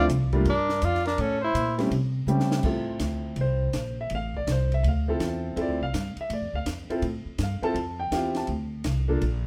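A moderate club reverb gives this late-night small-group swing and bop fragment an intimate, roomy sound, with the grand piano, woody upright bass and breathy tenor saxophone sitting up front. The tenor carries the melody with vibrato and scooped notes while a quieter trumpet plays a second line, both stopping at 1.8 seconds. A drum fill at 2.3 seconds then leads the vintage-toned piano, thumpy pizzicato gut-string bass and compact cocktail kit, with its dark cymbals and punchy kick, into a longer swinging stretch that settles on a rootless Gm7.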